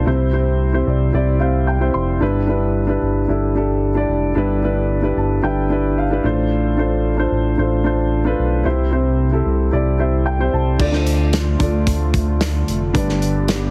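Piano-driven pop in G mixolydian at 112 BPM, this short excerpt from a longer piece has an anthemic, warm mood. A dark, woody upright piano carries the accompaniment from the start, adding fills around 0.6, 4.9 and 9.7 seconds. Beneath it sits a round, deep analog bass. Both are up front as the chords move through C, G6 and F6/A. At 10.8 seconds a loose, small-room indie drum kit arrives with punchy kick, snare, hi-hat and crash as the harmony shifts to Dm and then G. Shortly after, a soft, breathy pad with chorus adds sustained chords, and the whole mix has light studio reverb and a heavily compressed radio sound.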